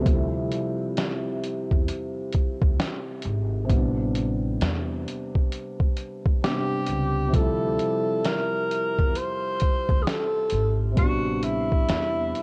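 Nostalgic and melancholic, this excerpt from a longer lo-fi hip hop piece sits at an unhurried 66 BPM in 4/4, with a swung sixteenth-note feel in D minor. A felt-muted upright piano, soft and dark with audible action noise and the haze of cassette tape, plays accompaniment up front over chords that alternate between Dm11 and Am11. Beneath it, a woody, growly upright bass played pizzicato on steel strings anchors the low end, while a compressed, pitched-down sampler-style drum kit supplies a thumpy kick, a medium-tuned snare and hi-hat with a muffled, small-room character. At 6.4 seconds a breathy tenor saxophone takes a jazz-style solo melody, its mellow tone carrying light vibrato, scooped notes and a soft attack. Light reverb and small room ambience surround the music, and worn, warbling old tape with pitch drift gives it an aged, dusty quality.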